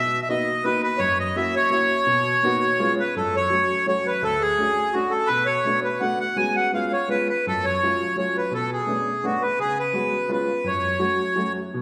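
A reedy accordion with a slow beating tone carries the melody from the first beat, close-miked, full and up front, over a woody, polished upright piano whose long sustain fills out the accompaniment in this nostalgic, whirling musette at 168 BPM in 3/4. The tune opens in B major and turns to F# harmonic minor at 3.2 s, moving through chords such as Bmaj7, F#7, Dmaj7 and F#mmaj7 before settling on F#m near the close. A wet recital hall reverb gives the sound the air of a church or concert hall, while the accordion itself stays dry; it stops at 11.5 s, just before the piano at 11.8 s, in this short passage cut from a longer piece.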